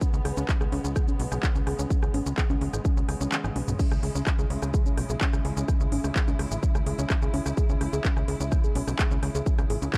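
A straight 4/4 pulse at 127 BPM drives this dark, melancholic melodic techno in C# minor, where an up-front, heavy electronic kick and a layered techno kit with smooth hats, handclaps, rim clicks, shaker, crash and toms carry the groove, a tight, nasal sequencer bass pumps beneath, a woody wave-folded pluck spins arpeggios through subtle chorus and dub echo, and a veiled, con sordino string section holds lush sustained chords on C#m, all in a dark digital ambience, with the kick dropping out for a drum fill from 3.3 to 3.8 seconds in this fragment of a longer piece.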